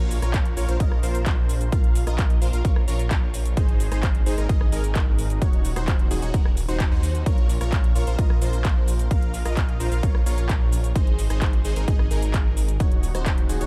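A supersaw stab riff and a detuned saw bass open this festival progressive house excerpt together, setting a euphoric, emotional tone in Bb minor at 130 BPM in a straight 4/4. The stab is punchy and sawtooth-based, with a filter pluck and moving notch shaping its sustained notes, and it carries sidechain pumping and digital delay. Beneath it, the bass sits thick and lush, saturated and up front, with chorus and its own sidechain pumping. The big-room drum kit slips in at 0.1 seconds with handclaps, a rim click, shaker and metallic hats, and an overdriven electronic kick lands at 0.3 seconds, punchy and up front. The harmony cycles through Bbm, Ab and Ebm twice over a dark, warm production with digital ambience.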